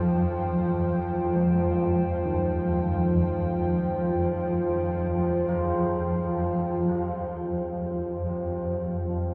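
A swarming, detuned drone with ring-modulated grit sits up front beside a deep, moody analog pad holding an Fsus2 chord through chorus, phaser and shimmer reverb, while soft, bronze carillon bells play tape-echoed arpeggios in the background and a barely audible singing bowl rings with slow metallic beating, all in free time and a vast, echoing cathedral space that makes this 9.3-second cut from a longer dark ambient piece feel ominous.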